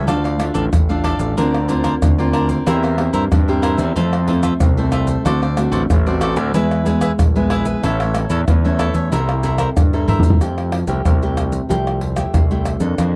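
A dry, close recording in a 1970s studio style puts the percussion and bass up front, in this short, playful and lively cut of samba and choro in D minor at 93 BPM. Maracas, a tight surdo, pandeiro and tamborim, played with hard hands in a small room, drive the groove, while a growling fingered electric bass, overdriven and punchy, sits boldly underneath. A crisp, bright picked cavaquinho and a classical nylon-string guitar, fingerpicked with audible finger squeak, fill in the harmony as the chords move from Dm through Fmaj7, D7, E and A to C6. A drum fill from 9.8 to 10.4 seconds carries the music into a new section on Fmaj9, where the cavaquinho drops out and the guitar, bass and percussion play on to the end.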